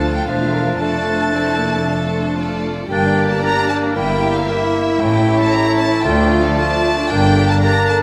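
Urgent and restless, this quick classical-period movement for symphony orchestra in D minor moves at 114 BPM in 4/4 with a rubato feel, cut from a longer piece. A violin section carries the melody with a warm, intimate sul tasto tone, soft attack and light vibrato, while a clear, vintage-toned solo clarinet and an expressive second violin section in the background add second lines. Focused violas, a distant, roomy bassoon and mellow sustained French horn chords fill out the middle over a rich bowed double bass section and smooth, even cellos, both stopping at 7.5 s, all set in a moderate scoring-stage reverb as the harmony moves from D minor through G minor and A7 and back.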